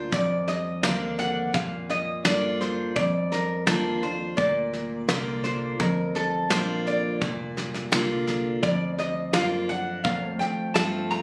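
A nasal, metallic lap resonator guitar, fingerpicked with a slide, carries a steel-bar solo up front through this down-home, heartfelt honky-tonk and classic country excerpt at 85 BPM in Bb major, over a bright picked dreadnought acoustic guitar, a round, foam-muted vintage electric bass, and a soft brush kit with a fat snare, punchy kick and rolled-off top, while a clean pedal steel guitar adds sustained chords with volume swells in the background from 4.4 seconds, all captured on a phone in the room with studio reverb and compression.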